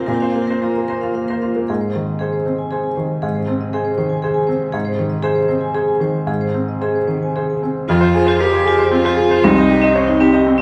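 A felt-muted upright piano, soft, mellow and intimate up front, begins this tender, hopeful neoclassical passage alongside a single bowed cello whose rich, focused vibrato sounds distant. A vibraphone struck with hard mallets joins at 0.1 seconds with metallic, ringing arpeggios, with a fast motor vibrato and a slapback echo. Moving in a rubato 3/4 at 109-121 BPM in Ab major, the harmony passes from Bbsus2 to Ab, then to Fm at 7.9 seconds and Cm near the close, all heard from further back in a wet recital hall and cut from a longer piece.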